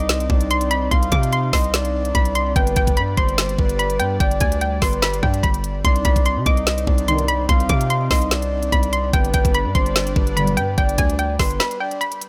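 Dark and melancholic, this half-time trap cut at 146 BPM in C harmonic minor pairs a hollow, bouncy square pluck melody with a breathy, flute-like synth lead on a second line, while a smooth analog pad holds sustained chords in the background, a punchy, heavy 808-style bass drops out at 11.6 seconds for a short break, a trap kit with knocking kick, woody snare and crisp hats sits up front, and brief round, brassy synth stabs land at 7.1 and 10.4 seconds, all within a digital ambience.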